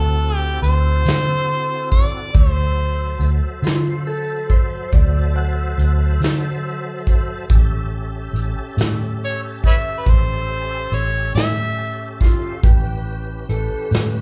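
This excerpt opens with an overdriven harmonica melody over a tonewheel organ's sustained chords and a muted fingered electric bass, with brushed drums joining at 0.6 seconds, in a laid-back, swaggering slow blues at 47 BPM in 12/8, centred on D mixolydian and tuned slightly flat. The harmonica sits up front in a jazz style, its smooth top coloured by light vibrato, tongue slaps and scooped notes, and it carries the solo line until 12.2 seconds. Beneath it, the organ holds full, lightly overdriven chords with chorus vibrato and a slow rotary speaker, while the bass is dark, round and punchy, sounding foam-muted through an amp. The brush kit, played in a small room with a tight kick and a medium-tuned snare plus hi-hat, has a rolled-off top and sits close in the mix. From 3.6 seconds a clean, dark lap steel adds a second line with fingerpicks, slide and volume swells, as the harmony moves from D7 to A7 at 7.5 seconds in a light reverb that suggests the band playing live together in one room.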